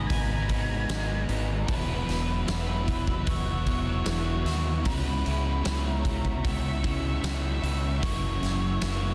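This dreamy, blissful shoegaze and dream-pop rock excerpt at 76 BPM in E lydian opens with a dark, fuzzy octave lead guitar singing its melody through distortion and tape echo, floating over a bright, detuned sawtooth pad with chorus and a slow filter swell, a faint, twangy twelve-string electric guitar picking arpeggios, and two background overdriven guitars playing riffs, one crunchy with reverse reverb and one hollow-bodied with lush chorus, while a growling fingered bass sits up front and a huge arena drum kit with a fat snare and punchy kick joins at 0.1 seconds, all moving through G#madd9, Esus2, C#m7 and F#7sus4 in a dense, heavily limited modern mix.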